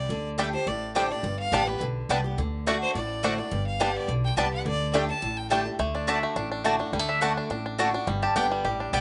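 Bluegrass with a virtuosic, lively swing, cut from a longer piece: a clear, earthy fiddle takes the opening solo up front over a boxy picked archtop guitar with slapback echo and a thumpy, woody upright bass, while a twangy fingerpicked banjo carries the melody and a picked mandolin adds stabs from 0.4 s, before a bright second mandolin takes the lead at 5.9 s, in a dry outdoor recording with a muted top end.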